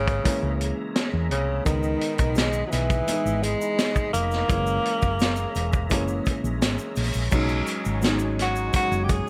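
Romantic and warm, this short excerpt of lush 1970s-style soul features a breathy, vibrato-laden tenor saxophone carrying the melody up front over a worn baby grand piano with long sustain, a gritty overdriven tonewheel organ holding sustained chords in the background through chorus vibrato and a slow rotary speaker, a round, amped hollow-body electric bass, and a vintage drum kit with a punchy kick, high-tuned snare and dark cymbals, while a grainy tube shaker joins at 1.7 s and studio reverb surrounds the mix.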